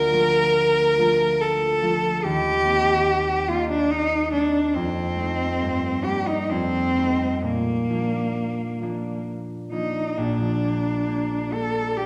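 In a rubato 3/4 at 63-73 BPM, this serene romantic classical fragment in Bb major sets a rich, focused bowed cello singing the melody with vibrato and a smooth top against a bright, ringing, thumb-plucked concert harp accompaniment, both up front in a resonant recital hall with a 1.4 s reverb tail.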